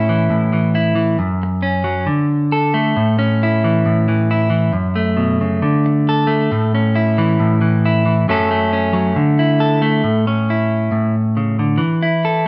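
Joyful and sunny, this short highlife excerpt features a clean electric guitar playing a solo from start to finish at 12.5 seconds. The guitar is picked and sits up front, its tone warm and clean, ranging from F#2 up to A4. The harmony circles through A, F#m and D-based chords in a repeating pattern, with a Dsus2 adding an open color before a brief closing passage from 10.0 seconds moves from A to Esus4, leaving the phrase hanging. The playing is in a straight 4/4 feel. A moderate large-studio reverb gives the sound an airy sense of space, with the band playing live in one room.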